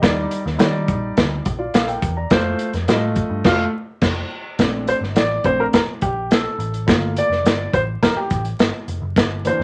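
Uplifting, danceable uptempo 1960s-style soul in Bb major at 105 BPM, cut from a longer piece, where a present, polished grand piano accompanies over a round, foam-muted picked electric bass and a muffled, lo-fi vintage drum kit with a punchy kick and dark cymbals, the band hitting an accent from 3.5 to 4.6 seconds before the piano takes a solo from 4.6 seconds over Bbmaj7 and Gm7, all framed by light reverb and vinyl crackle.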